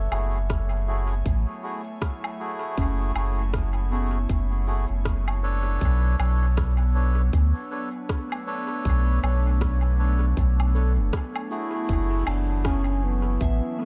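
A deep, round sub bass sits up front in this spacious, meditative ambient dub excerpt, holding the low end at 79 BPM in 4/4 with a swung sixteenth-note feel in F# minor. Behind it, an airy, breathy pad sustains an F#m9 chord with chorus, while a soft FM synth bell in the background plays pure, decaying arpeggios through chorus and dub echo. A reedy, nasal melodica with a vintage character fires off stabs soaked in dub echo. A tight electronic kick drum with studio reverb carries the beat beneath a produced kit of electronic shaker, woodblock and rim click, which gets both studio reverb and dub echo. At 11.5 seconds a dark trombone enters with a punchy, classical-style solo melody and light vibrato, its lines repeating in dub echo as the passage moves into a new section at 11.9 seconds. The mix is echo-heavy with little room reverb, leaving open space around each part.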